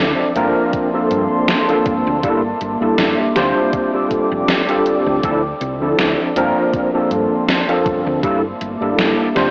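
This vaporwave fragment drifts by in a faded, dreamy haze, cut from a longer piece and moving at an unhurried pace with a light swing. Up front, an overdriven tine electric piano carries the accompaniment with a barky, gritty bite, colored by ensemble chorus and tape echo. Beneath it, a warbly tape-like pad holds sustained chords with a slow attack and long release, its detuned, nostalgic tone softened by chorus and its own reverb, while a woody fretless electric bass adds a dark, round, punchy low end with tube saturation. A gated 80s digital drum machine enters at 0.4 seconds with hi-hat and a gated-reverb snare, and a thumpy electronic kick joins at 0.7 seconds, both sounding as though re-recorded in a small room. The harmony moves through lush extended chords such as Gm11, C13/G, F69 and Dm9, and the whole recording sits in a huge ambient reverb with worn cassette wobble, pitch drift and a thin, AM-radio quality.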